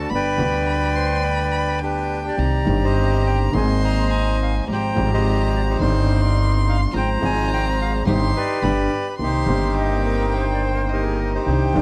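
Dramatic and tense, this rubato tango excerpt in C minor at 106 BPM is led by a reedy, bright bandoneon up front with plate reverb, shadowed by a bowed violin with vibrato and portamento, while a worn, slightly detuned upright piano with audible action noise and a woody, pizzicato upright bass anchor the harmony. A chamber string section with gut-string tone enters in the background at 2.4 seconds with stabs, and a breathy flute with analog delay appears briefly in the background at 0.7 seconds and again at 9.8 seconds. The production is dark with light reverb, moving from G through Cm, Abadd9 and Fm/Ab before settling on Cm7.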